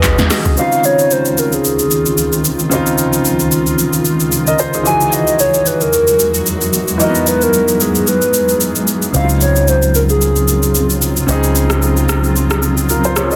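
Warm and relaxed, this amapiano cut at 112 BPM in Db major swings lightly as a woody, clarinet-like synth lead with chorus, phaser and tape echo carries the melody until 10.9 s over a blurred granular cloud pad and an overdriven deep house kit with punchy snare and metallic hats; after a brief opening of dark organ stab and round log drum bass, a boxy, intimate grand piano enters at 0.6 s and a foam-muted fingered electric bass joins at 9.1 s, all within a dense, heavily limited modern master.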